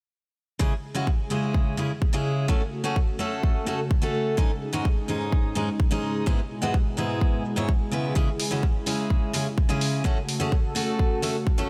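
A digital ambience surrounds this anthemic, powerful festival progressive house excerpt in C# minor at 127 BPM. A bright, full-bodied picked steel-string acoustic guitar sits up front with delay and sidechain pumping. Alongside it from the start are a punchy electronic kick and a lush, airy detuned sawtooth pad, thick with chorus, phaser and pumping, while a filter sweep on an analog synth pad runs throughout. Bright electronic hi-hats enter at 8.4 seconds over a C#m, F#m, G#sus4, E/G# progression.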